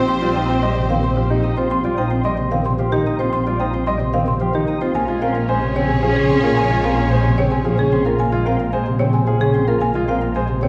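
Minimalist classical pattern music in 3/4 at 111 BPM, this meditative yet urgent passage in Bb dorian is cut from a longer piece, with a buzzing, woody marimba carrying the melody over a chamber organ's bright, chiffy flute stops and polished baby grand piano arpeggios, all anchored by an up-front bowed double bass section holding Bb. A clear, vintage-toned clarinet and a lush, expressive violin section with vibrato appear together from 0.0 to 1.5 seconds and again from 5.0 to 8.0 seconds, as the harmony moves from Cm/Bb to Bbm7 at 5.0 seconds. A wet scoring-stage reverb places the ensemble further back in the room.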